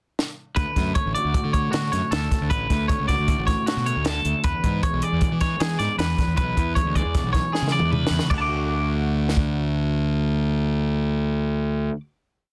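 A brisk 5/4 groove at 156 BPM drives this short, complete math rock and midwest emo piece in D lydian, its mood wistful yet playful. A compact cocktail drum kit sits up front with a dry, acoustic sound, a high-tuned snare, a punchy kick and dark cymbals, and it opens with a quick fill in the pickup bar before a second fill at 7.5 seconds. A fuzz-drenched fingered electric bass, overdriven and also up front, plays a syncopated riff, while a twangy electric guitar, bright, picked and compressed with spring reverb, repeats a high arpeggiated ostinato. Beneath them, a mellow electric guitar plays a dark, clean, fingerstyle rolling arpeggio through analog chorus. The harmony moves from Dmaj7 to E7 before settling on a final D chord at 8.3 seconds, which rings on after the drums stop at 9.5 seconds. The dry, dense, heavily limited master keeps every part close and loud.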